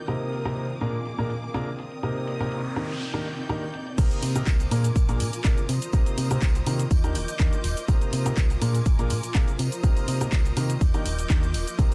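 A boxy grand piano riff with audible action noise, delay and sidechain pumping leads this soulful, bittersweet piano house cut in C minor at 123 BPM, cycling through Cm7, Bb7 and Ebmaj7 over a gently swung 4/4. Lush, distant violins hold vibrato-laden chords and a blurred granular pad drifts very quietly beneath, while a tape-warm analog drum machine with filtered claps, hats, shaker and crash ticks along. A noise sweep runs from 2.4 to 4.0 seconds into the drop, where an up-front layered kick, a round, dark FM bass and a background tambourine arrive, all inside a dry, dense and heavily limited mix.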